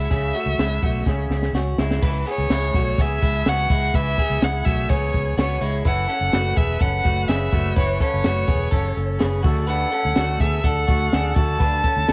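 Violin, guitar and bass open this wistful, restless excerpt of jangly indie pop together at 0.0 seconds, with a compact cocktail drum kit joining a moment later at a straight 125 BPM in 4/4 and F# minor. The bowed violin carries the melody up front, its single player focused and boxy with vibrato, while a bright, twangy electric guitar picks arpeggios through a small old amp that gives it a slightly broken-up, lo-fi edge. Underneath, a vintage fingered electric bass sits up front, foam-muted, round and punchy with a dark, amped tone, and the drums offer a punchy kick, a high-tuned snare, hi-hat and crash cymbal in a smooth, shadowy small room. A drum fill at 1.1 seconds leads into a new section at 2.0 seconds, where a reedy, breathy, nasal melodica enters in the background as a second line. The harmony moves from C#m7 to F#m7 and then D. Violin, guitar, drums and melodica carry a cassette-tape colour, and the whole home recording sits in light reverb and small-room ambience.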